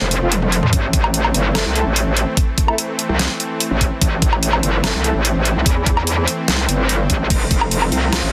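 A metallic, saturated FM wobble bass dominates this aggressive, chaotic heavy wobble dubstep excerpt in A minor, running at 146 BPM in a half-time feel over chords moving from F to A minor and back to F, with a dubstep drum kit of deep snare, bright hats, crash, toms and woodblock playing a fill at 0.3 seconds before the knocking, overdriven electronic kick enters at 0.7 seconds. Behind them, a lush, detuned supersaw pad holds sustained chords with sidechain pumping, while a dark, distant brass ensemble with light vibrato and tape echo punches in stabs until 5.1 seconds and returns briefly near the end. The dense, heavily limited mix carries light reverb, with the bass and drums pushed up front.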